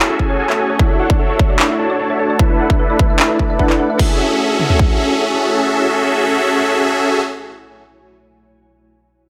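Lush and emotional, this half-time future bass fragment sets huge detuned supersaw chords up front, carried by sidechain pumping, delay and a filter sweep through the first 4.0 seconds, over a mellow, ethereal pad and a round, tine-like thumb-piano-like pluck arpeggiating in the background until 4.2 seconds, while a punchy, layered big-room dance kit of kick, toms, crash cymbal and handclaps drives the opening stretch in light reverb.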